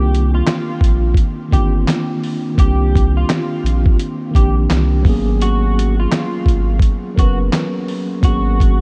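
A dark, slightly broken-up electric guitar through a small old amp carries the melody with analog chorus over a mellow tine electric piano and a deep, round, up-front dub sub bass from the first moment, joined at 0.1 seconds by a muffled, tape-warm lo-fi sampler-style drum kit of thumpy kick, fat snare, hi-hat and handclaps with vintage 12-bit grit, in this melancholic, nostalgic lo-fi hip hop fragment at 85 BPM with a swung 16th-note feel in C minor, moving from Cm11 to Abm11 at 5.1 seconds under light digital reverb.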